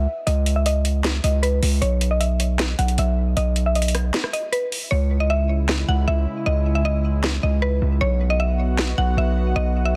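Trap-leaning hip hop at 155 BPM with a half-time feel, this menacing, eerie fragment is cut from a longer piece. A hard-hitting 808-style bass sits up front throughout, punchy and saturated with a sine core and a fast, decaying attack, moving between B1 and C#2. Above it, a woody, mallet-like FM synth pluck carries the melody from B4 to F#5, treated with chorus, delay and a low-pass filter that sweeps over the first 4.9 seconds. The electronic trap kit supplies a sharp snare, rim clicks and metallic hi-hats with a tape-tinged edge, pausing for a brief break before 4.9 seconds, after which the hats drop out. At that point a smooth, airy analog pad of detuned sawtooths arrives with a slow attack and lush chorus, holding a C#m chord after earlier B harmony and closing on B5. The whole sits in a digital ambience with vinyl crackle under a dense, heavily limited modern master.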